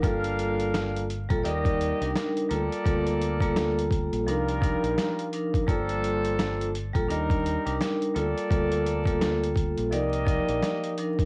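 Moody and tough, this boom-bap hip-hop excerpt moves at 85 BPM in 4/4 with a 16th-note swing, set in G minor and cut from a longer piece. A dusty, sampler-style drum kit sits up front with a thumpy kick, a medium-tuned snare and hi-hat, its compressed, gritty sound pushed further by overdrive and cassette tape grit. Underneath, a deep dub fingered electric bass gives a dark, round low end, while a vibraphone played with medium hard mallets carries the accompaniment up front, metallic and ringing with a slow motor vibrato, filtered and tape-softened. A clear, vintage horn section adds tight stabs through filters, cassette tape and analog delay. The harmony cycles through Gm9, Ebmaj7, Gm9/D and Cm11 twice, and the whole track has the dry, close feel of a home cassette recording with vinyl crackle.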